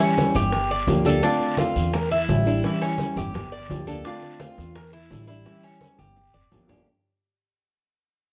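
Danceable and nostalgic, this short, fading cut of Cuban son and guajira at 170 BPM sets a full-bodied, fingerpicked nylon-string guitar with audible finger squeak and a bright, metallic Cuban tres playing arpeggios up front over a woody, thumpy pizzicato upright bass, while compressed congas, tight high-tuned bongos, a raspy guiro and grainy maracas sit in the background through a cycle of C#dim, Gm7, Dm7 and Em7b5 chords, with a drum fill arriving at 6.0 seconds and the whole recording wrapped in wet studio reverb and the warbly pitch drift of worn cassette tape.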